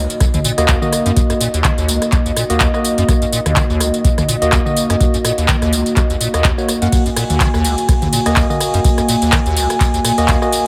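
Acid house with a gritty, driving mood and a swung 4/4 groove, this short cut from a longer piece sits on a single E-flat minor chord throughout. A deep, tape-warm electronic kick and an up-front, booming analog drum machine with metallic hats, handclaps, rim clicks, tambourine, ride and toms drive the track, while a squelchy, resonant square-wave acid bass riff with chorus and delay snaps underneath. A dark, nasal, detuned analog pad holds sustained chords with sidechain pumping, and from 0.6 seconds a tine electric piano adds clean stabs through a combo amp, roughened with 12-bit sampler grit, medium tremolo and delay, all in a light reverb.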